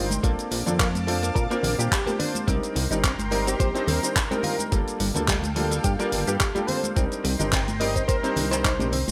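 An up-front, overdriven pop drum kit drives this sensual, sleek nu-disco clip, its layered electronic sound carrying handclaps, shaker and warm hi-hats over a compressed, thumpy electronic kick with a gritty, sampler-style edge. Underneath, a glossy, retro synth bass with chorus and a dark, plucky pulse-and-sawtooth tone anchors the groove, while maracas and congas played with hard hands sit bright and close in the background. A clear baby grand piano with short sustain plays the accompaniment through sidechain pumping and tape echo, as a picked, clean electric guitar, recorded direct, repeats a riff back in the mix. Above them, a lush, detuned unison pad holds slow-attack chords, colored by chorus, phaser and pumping, and a thick, mellow unison lead with vibrato and tape echo sings its melody from the background. The swung groove moves through Bbmaj7, Cm7, Gm9 and back to Cm7, and the whole section has a dry, gritty hardware character with little reverb.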